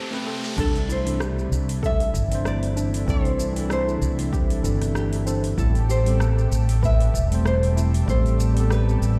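Sunny and relaxed, this sunset chillout excerpt moves at 96 BPM in 4/4 with a gentle 16th-note swing, drifting from Am9 to C69 and back to Am9 at 5.6 seconds. An electronic riser opens the clip and gives way at 0.6 seconds to a punchy, overdriven electronic kick and a mellow fretless electric bass, round and dark, sitting up front with analog chorus. Fingerpicked nylon-string guitar carries the melody with delay, set over a clean tine electric piano accompaniment and a lush, thick unison pad whose detuned sawtooth and noise layers add an airy brightness under chorus. A soft, wave-folded pluck plays arpeggios in the background, colored by analog chorus, delay and cassette tape. The deep house kit adds metallic hats, rim click, shaker and crash, overdriven and filtered, while the whole mix sounds as if played on a big sound system in a bare room with a large studio reverb.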